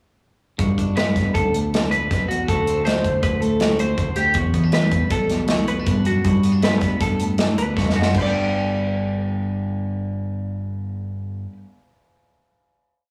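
A straight 5/4 groove drives this short, wistful yet bright math rock and midwest emo piece, with the drum kit's tight kick, medium-tuned snare, hi-hat and crash sitting up front under a rolled-off top, and the growling, overdriven fingered bass locked to the kick. A clean electric guitar plays syncopated, picked fingerstyle accompaniment through a Gmaj9, D7 and Em9 progression, while a compressed, twangy twelve-string electric guitar with spring reverb rings out an arpeggiated ostinato from 1.0 seconds. After a drum fill the kit drops out at 8.2 seconds, leaving the guitars and bass to hold a final G chord in a rough rehearsal-room sound with small-room ambience and saturation.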